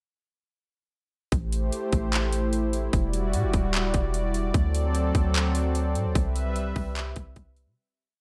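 A detuned sawtooth pad with chorus and sidechain pumping, a round, dark 808-style sub-bass whose long notes follow the kick with pitch slides, and an overdriven trap kit of hard-clipped kick, metallic hi-hats and handclaps all enter at 1.3 seconds in a sparse half-time beat, creating a spacious, ethereal hip hop cloud-rap mood at 149 BPM in A dorian over Am7, Em9, D7 and Cmaj7, set in a digital ambience before fading out from 6.2 seconds.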